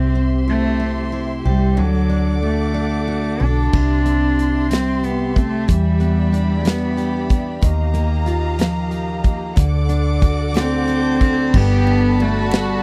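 Heartfelt and romantic, this six-eight pop ballad opens with a close, sul tasto solo cello singing the melody over a full-bodied picked steel-string acoustic guitar, a dark, round, foam-muted electric bass and soft, intimate sustained chords from a studio string section. An airy, polished drum kit with a punchy kick joins at 3.7 seconds, and a reedy, gut-toned violin section adds a smooth second line from 11.5 seconds as the chords settle onto Gadd9. The dry, close 1970s-style studio sound keeps the cello, bass and drums up front.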